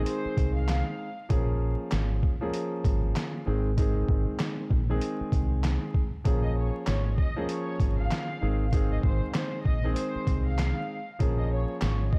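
A dark, warm production with vinyl crackle and a digital ambience frames this nostalgic, soulful boom-bap hip-hop fragment, cut from a longer piece and set in a swung 4/4. Up front sit a sampler-style drum kit, compressed, muffled and pitched down, with a thumpy kick, medium-tuned snare, hi-hat and handclaps, and a deep dub fingered electric bass, round and amped. A smooth, vintage grand piano carries the accompaniment through a cassette-tape haze and filtering, moving between Ab and Bbm7 chords. A close studio violin section plays the melody with soft-attack sul tasto bowing that sounds pure and floating, touched with filtering and digital delay. The strings appear only briefly at the start, dropping out at 1.3 seconds and returning at 6.4 seconds to carry the line to the end.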